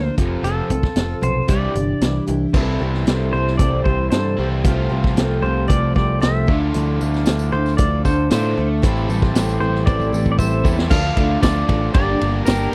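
A straight 4/4 pulse at 115 BPM drives this wistful, reflective folk rock and heartland rock excerpt in D minor, where a clean, fingerpicked pedal steel guitar with volume swells sings the melody over shimmering octave-doubled twelve-string acoustic guitar, a crunchy double-tracked overdriven guitar riff, a bright, punchy picked electric bass and an up-front vintage drum kit with dark cymbals and a high-tuned snare, while a reedy, breathing harmonium enters very quietly at 2.5 seconds, a drum fill arrives at 9.9 seconds, and a jingly tambourine sits in the background from 6.8 seconds, all captured in a dry, close 1970s-style studio sound.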